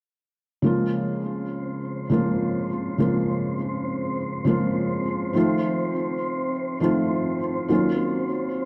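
Downtempo in Bb minor at 102 BPM with a 16th-note swing, this short, earthy excerpt cut from a longer piece moves through Bbm7, F7 and Ebm9. A felt-muted upright piano carries the accompaniment from 0.6 seconds, its dark, intimate tone sitting up front with audible action noise, short sustain and a touch of delay. From 1.4 seconds a breathy, wind-like tuned noise texture drifts in beneath it with a slow attack and long release, while a wet echo-chamber reverb lends the whole a small-room glow.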